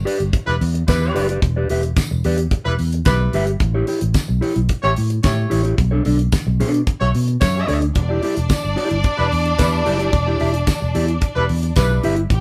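Danceable and glamorous, this straight-feel disco cut has a punchy fingered electric bass and a dry, damped 70s drum kit with a fat snare and tight kick driving up front, with a dark, clean electric guitar and a tight horn section playing smooth-topped stabs, a jingly tambourine sitting in the background, and a lush, biting bowed string section entering distantly at 7.9 seconds as a second line, all in a light-reverb room where the band plays live together.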